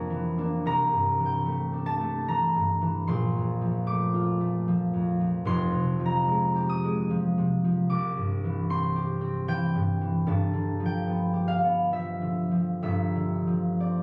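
A ringing, warm concert harp plays alone, thumb-plucked and up front across a range from F1 to Eb6, in this graceful, peaceful classical excerpt in 3/4 with a rubato feel at 62-77 BPM, settling into C major from 5.5 s through rich chords such as Bbmaj7#11/F, Fm9 and G9sus4, all heard in a moderate recital-hall reverb as if captured on a phone in the room.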